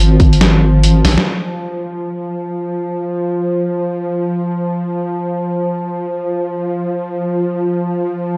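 Deep dubstep in free time and F minor, meditative and cavernous, this excerpt opens on a drop where a dark, saturated wobble bass with chorus enters at once, joined at 0.2 s by a compressed, pitched-down trip hop sampler-style drum kit of hi-hat and snare that plays a drum fill at 1.0 s before a band accent at 1.2 s, all over an F minor chord and a tense, string-like bowed-like drone with ring modulation, vibrato and built-in reverb, which sounds from the very start and then sustains alone until 8.4 s, heard through a dry, gritty cassette-tape recording with light reverb.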